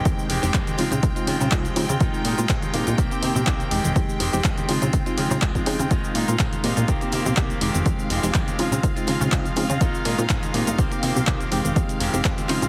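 A heavily compressed, radio-like sound with light reverb frames this short cut of filtered disco house in F minor, moving at 123 BPM with a gentle swing on the sixteenths and a sensual, funky mood. An up-front, punchy electronic kick anchors the groove, joined by a small-room analog drum machine playing cabasa, handclaps and hi-hat, while very quiet, bright acoustic tambourine and congas sit close underneath. A plucky analog bass with a fast attack and a decaying, wave-folded sawtooth edge carries the low end, and a clean, picked electric guitar plays a riff, both pumping against the kick. A worn, slightly out-of-tune tine electric piano with phaser adds mellow accompaniment, and a lush vintage string machine with ensemble chorus holds sustained chords in the background. The chords cycle through Fm9, Dbmaj7, Bb7sus4 and Cm7, and a barely audible downlifter passes between 0.2 and 2.0 seconds.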